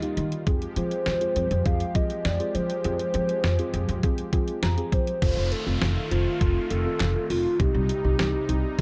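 Melancholic and cool, this short synth-pop excerpt moves at 101 BPM in a straight 4/4, with a dark production bathed in light reverb. A hollow, clarinet-like synth lead carries the melody between F4 and F5, its mellow square-and-triangle tone given vibrato and chorus. Muted, felt-like synth keys supply soft, intimate accompaniment with a fast, decaying attack and play fills at the very start and again from 4.3 s, while a brassy, detuned analog pad holds bold sustained chords underneath with a filter swell. Up front, a clean 12-bit drum machine with a thumpy kick, fat snare, hi-hat, handclaps and crash cymbal sits beside a woody pizzicato upright bass that enters at 0.2 s. The harmony moves from Fmadd9 to F7 as a downlifter sweeps in at 5.2 s, before settling on Cm at 7.6 s.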